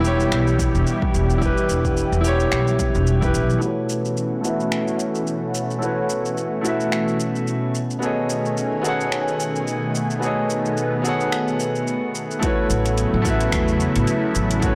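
A bright grand piano with lo-fi 12-bit sampler grit, low-pass filtering and delay opens alongside a lush, detuned unison pad coloured by chorus and phaser, a woody, growly upright bass and a deep house kit of finger snaps, metallic hats and shaker, with a punchy, overdriven electronic kick joining at 0.6 s in this relaxed, sunny sunset chillout piece at 109 BPM with a swung 16th feel in A lydian, where bass and kick drop away at 3.5 s while a filter sweep runs over the piano through an A69 to B13 passage, then the kick returns at 12.4 s with the bass just after, the whole mix bathed in plate reverb and a blown-out, overdriven sound.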